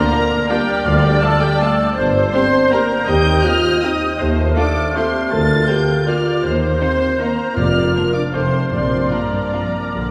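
A festive, elegant orchestral passage in 3/4 opens with nearly the full ensemble sounding at once: a lush, vibrato-rich violin section carries the melody high above while a mellow French horn section holds sustained chords close at hand. The tempo moves freely with rubato, somewhere between 142 and 176 BPM, in Bb major, passing through Gm and Cm/Eb before settling back toward Bb. A smooth, even viola section and a quieter second violin line fill the middle, joined in the background by a pure-toned flute section, a distant, roomy oboe and a vintage-sounding bassoon. Below, a woody double bass section, an expressive cello section with portamento, and a very quiet tuba supply the bass. Soft-malleted, round timpani enter at 7.6 seconds and sound until 9.3 seconds, carrying through the closing turn from F to Bb. A wet church reverb gives the ensemble a spacious, resonant setting, and the passage is cut from a longer piece.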